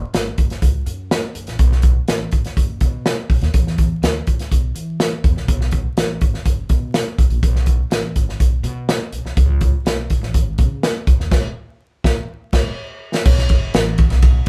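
A straight 4/4 pulse at 124 BPM drives this passionate, urgent stretch of uptempo 1960s-style soul, cut from a longer piece, where a woody, thumpy pizzicato upright bass on gut strings holds down the low end beneath an airy, polished, up-front acoustic drum kit with a punchy kick, medium-tuned snare, hi-hat, ride and crash, the two playing live together in one room with moderate reverb and a layer of vinyl crackle, reaching a band accent at 11.3 seconds and a drum fill at 12.8 seconds before a new section arrives at 13.3 seconds.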